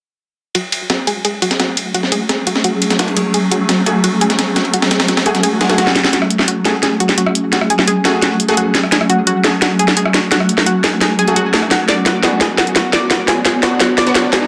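This excerpt of dark, futuristic technical drum and bass at 172 BPM in F# minor opens at 0.5 seconds with an up-front, cracking drum and bass kit with bright hats, a gritty, high-tuned breakbeat sampler kit, and a round analog pluck playing chorused, tape-echoed arpeggios, soon joined by a swarming, detuned granular drone holding F#madd9 under filter sweeps. A bold, punchy orchestra-hit-like stab with a noise layer sits in the background from 3.9 seconds, and a very quiet swell rises beneath a drum fill as the breakbeat kit drops out at 6.1 seconds. From there a build-up takes over, the drone keeps sweeping, the harmony moves to Bm, and a faint riser closes the dense, heavily limited passage.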